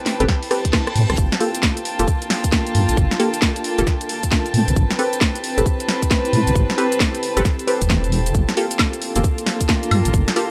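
A dry, gritty hardware sound with transformer saturation and a light digital ambience frames this moody, soulful two-step UK garage cut, taken from a longer piece and moving at 134 BPM in 4/4 with a 63% swing on the 16ths, in G dorian. Up front, a tight electronic kick and a layered garage kit of cracking snare, warm hats, rim click, shaker and woodblock sound re-recorded in a small room, with a drum fill and a background reverse cymbal arriving at 0.5 seconds. A deep, dark wobble bass with chorus sits prominently underneath, while a punchy, bright chord stab with a wave-folded, plucky filter edge, chorus and analog delay carries the harmony between Am9 and Gm9. Behind them, an ethereal, mellow pad holds slow-blooming chords with ensemble chorus, its own reverb, tremolo and sidechain pumping. A distant, floating string section, bowed softly sul tasto with a warm, pure tone, adds texture and also pumps with the sidechain.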